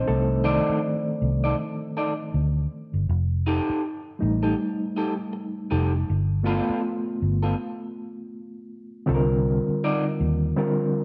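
R&B with a smooth, late-night mood and a swung sixteenth-note feel, cut from a longer piece. An overdriven reed electric piano, gritty and reedy with a fast tremolo through a combo amp, solos up front over a dark, round, foam-muted fingered electric bass. An electric guitar through a small old amp adds a slightly broken-up, lo-fi picked second line from 0.4 seconds; after a stop at 7.6 seconds, a new section begins at 9.1 seconds on a Cm9 chord, inside a wet echo-chamber space.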